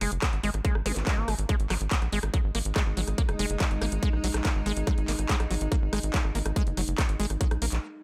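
A squelchy, resonant acid bass riff with chorus, sidechain pumping and digital delay drives this short, psychedelic trance excerpt in straight 4/4, sitting above a tight, punchy sequencer bass and a layered, up-front electronic kick with a small-room character. A big-room dance kit adds handclaps, hi-hat and rim clicks, a background zap flickers by at 0.9 s, and from 2.3 s an evolving, detuned wavetable pad morphs through sustained chords with its own chorus, reverb and sidechain pumping. The mix carries light reverb and halts abruptly at 7.8 s.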